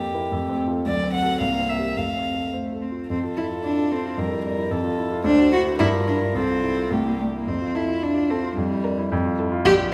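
A quick classical-period movement for piano trio in F major, this brief excerpt cut from a longer piece moves at 110 BPM in a straight 2/4 with a spirited, graceful mood. The violin carries the melody with a dark, airy tone, played sul tasto with light vibrato and soft attacks, heard close and intimate. Beneath it the cello sings a second line, its warm, up-front sound also drawn sul tasto with light vibrato and a gentle, breathy bow. The grand piano supplies a present, polished accompaniment, its range reaching down to Bb1, while the harmony moves through F, D7, C7 and Gm7 with diminished colour over an F bass. A moderate scoring-stage reverb frames the trio as all three parts play together from the start, the violin and cello falling away just before the piano's final note at 9.9 seconds.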